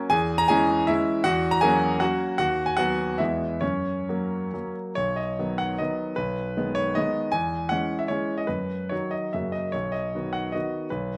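Proud and graceful, this short romantic classical piece is a triple-time dance in 3/4 for solo concert grand piano, set in B major with dotted rhythms and a flexible rubato feel that moves between 126 and 168 BPM. Cut from a longer work, it opens with a phrase moving through C#m/E, F#7/E and B/D# before settling onto E and F#. At 5.0 seconds a new section begins on B, then passes through G#m/B and C#m/E before coming home through F# to B at 9.7 seconds. The piano ranges from a deep bass at B1 up to A#5, sounding clear, polished and present, with audible action noise that adds an intimate touch. Close, detailed microphones keep the instrument up front, while light reverb gives it a subtle sense of space.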